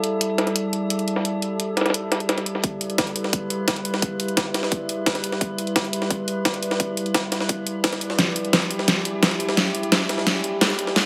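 Set in a lush hall reverb, this dark, aggressive technical drum and bass passage at 173 BPM in E minor opens on an eerie, nasal FM drone with a metallic, warbling vintage tone, its slow-attack chords held on Em with chorus and a sidechain pump, while a gritty, pitched-up breakbeat kit with a high-tuned snare and an overdriven dubstep kit with a deep snare sit up front. A punchy, overdriven electronic kick enters at 2.6 s as a build-up begins; it and the dubstep kit are both layered electronic parts re-recorded in a small room. A drum fill arrives at 8.2 s and drives to the cut.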